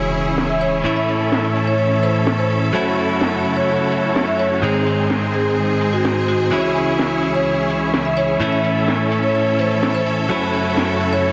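This dense, heavily limited modern master carries light digital ambience around an emotional, euphoric festival progressive house passage cut from a longer piece. Up front, a huge, detuned supersaw lead plays a riff through a low-pass filter and delay, while a direct-recorded clean electric guitar, picked and compressed, carries the accompaniment just as prominently. Beneath them, a lush, bright studio string section holds intense bowed chords with vibrato through a minor-key progression. An electronic sub drop marks the opening impact and lasts until 0.8 seconds, and a close-miked, dry marimba played with medium mallets enters at 0.5 seconds with a full, warm melody set in delay. A layered house drum kit sits in the background, its cracking snare and hi-hats softened by low-pass filtering.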